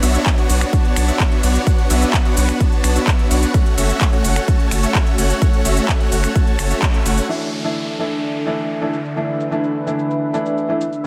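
Festival progressive house at 128 BPM in D major, this triumphant, euphoric cut opens on a drop where huge, detuned supersaw chords with delay ride over a background supersaw pad, a saturated sub bass, a punchy overdriven kick and a big-room kit of snaps, claps, crisp hats, ride and shaker. The chords, pad and bass pump under sidechain until a band accent at 6.8 seconds, after which a soft, felt-muted upright piano with delay enters at 7.3 seconds alongside the pad and kit, beneath a filter sweep on the supersaw synth and an electronic downlifter.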